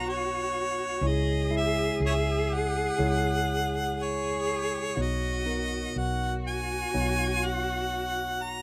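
This acoustic folk-pop ballad moves at a slow 61 BPM in a straight 4/4, tuned to A4 = 441 Hz, and its mood is heartbroken and melancholic throughout this 8.6-second cut from a longer piece. A clear, up-front harmonica carries the melody in a jazz-style solo, colored by light vibrato, tongue slaps and scooped notes. Beneath it, a single bowed cello plays an expressive second line from a distance, warm in tone, with vibrato and portamento. A worn, slightly out-of-tune tine electric piano, heard clean through a combo amp, fills out the accompaniment, while a woody fretless electric bass adds a dark, growly, round and punchy low end with a hollow-body character. The harmony rests on Badd9, shifts to C#m at 1.0 seconds, and returns to Badd9 at 5.0 seconds, all within light reverb.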